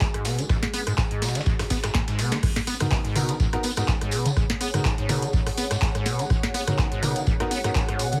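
A squelchy, resonant acid bass riff with a filter sweep opens this gritty, trippy acid house piece over a sidechain-pumped vintage analog pad, a deep, up-front electronic kick, a booming analog drum machine with metallic hats and a tonal snare, a very quiet dusty sampler-style kit and a jingly tambourine; after a drum fill the drop lands at 2.4 s, where the pad stops, a clear, worn baby grand piano adds delayed stabs from 2.8 s, and a blurred, evolving granular cloud pad pumps in at 3.4 s, all within a heavily compressed radio-style sound.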